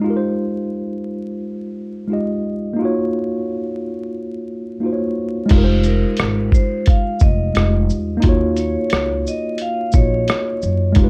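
Lo-fi hip hop at 88 BPM in F phrygian, reflective and hazy, with a swung 16th feel, light reverb and a bed of vinyl crackle, cut from a longer piece. A worn, slightly out-of-tune tine electric piano opens alone, filtered and up front, moving between Fm9 and Ebm9 chords. At 5.5 seconds a woody, growly pizzicato upright bass and a compressed, pitched-down sampler drum kit with a thumpy kick, rim click, shaker, hi-hat and crash arrive, and at 5.9 seconds a dry, ringing vibraphone melody played with medium hard mallets enters softly behind them.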